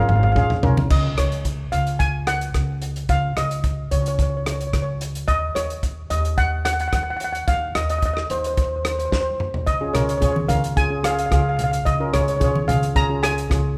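Sunny and carefree, this calypso excerpt features a shimmering, up-front lead steel pan played with medium rubber sticks over a woody, growly pizzicato upright bass and a punchy soul drum kit with a fat snare, while a mellow double-seconds pan and low-tuned congas drop out after a drum fill at the start and return near 9.8 s, all set in a moderate recital-hall reverb.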